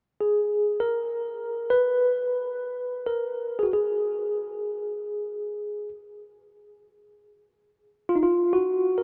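Free-time and unhurried, this haunting, spacious world meditation fragment, cut from a longer piece in G# dorian, features a clean tine electric piano alone from 0.2 to 9.0 s, sitting up front through a combo amp with a medium tremolo, its notes ranging from D#4 to B4 and hanging in a huge, wet ambient reverb with a 4.8 s decay.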